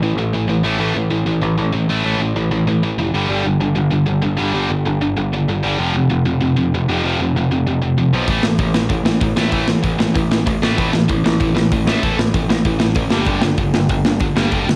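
Punk rock at 192 BPM in A minor, raw and aggressive, built on a tight, bright, double-tracked distorted guitar riff with a cassette-tape grit that cycles through A5, G5 and F5 power chords, backed by a growly, overdriven picked electric bass. A big acoustic rock kit with a punchy kick, medium-tuned snare and hi-hat crashes in at 8.3 seconds, sitting up front with the guitar in a big room sound. The home cassette recording carries light reverb and a rough, lo-fi edge, and this excerpt is cut from a longer piece.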